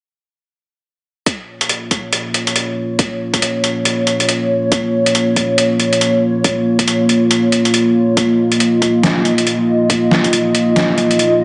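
Deep dubstep at 139 BPM in Bb minor with a half-time, swung feel, cavernous and meditative, where a dark, detuned analog pad with chorus holds sustained Bbm chords up front from 1.8 s, while a deep, layered electronic kick and a muffled, pitched-down, overdriven sampler-style kit of hi-hat and snare enter at 1.3 s, all bathed in a lush hall reverb and squeezed into a heavily compressed, radio-like sound in this excerpt cut from a longer piece.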